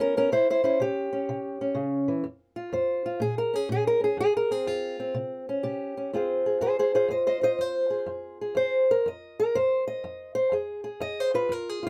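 Brooding and soulful, this fragment of a longer acoustic country blues piece features a lone fingerpicked old ladder-braced acoustic guitar, up front and carrying the whole performance with a swung 4/4 feel. Its tone is dark, woody and boxy, with the character of old strings, set in a light reverb. The passage runs through the same section twice, moving over chords like C, F5, Bbm and C5 before settling on Fm at 6.1 seconds.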